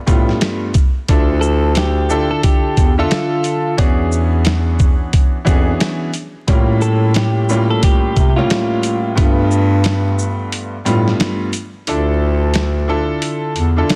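This dark, gritty boom-bap hip-hop excerpt moves with a loose, swung sixteenth-note feel. A sampler-style drum kit sits up front, pitched down and compressed, with a thumpy kick, a medium-tuned snare, hi-hat and shaker, all carrying a tape-warm grit. A mellow bass clarinet carries the low end in a classical style, while a smooth, vintage grand piano voices rich extended jazz chords beside it. A clean, picked electric guitar enters at 1.4 seconds with a compressed, delayed melody that sits lower in the mix. After a break at 10.5 seconds, the kick drops out at 11.9 seconds as the piece moves into a new section. The dry, dense, heavily limited master is dusted with vinyl crackle.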